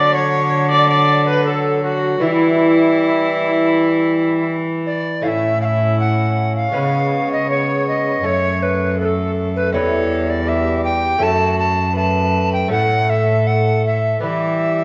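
A breathy tenor recorder with a crisp, chiffy attack and vibrato leads this solemn, rustic renaissance-style consort dance in E dorian at 80 BPM, cut from a longer piece, joined throughout by a gut-strung viola on the second line, a delicate fingerpicked double-strung lute and a mellow bassoon set in the background, and a rich, reedy bowed cello holding the bass up front, all in a moderate recital hall reverb as the music moves into its second section at 5.2 seconds.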